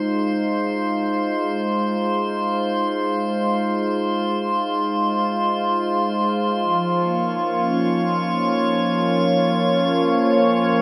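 In free time, this serene, spacious ambient excerpt in F minor fades in over 10.8 seconds as a warm, warbling, detuned analog pad with chorus sustains Fm7 before shifting to Bbm/F at 6.6 seconds, while a glassy texture of drifting overtones with chorus and built-in reverb hovers above it, both held up front in a wet spring reverb.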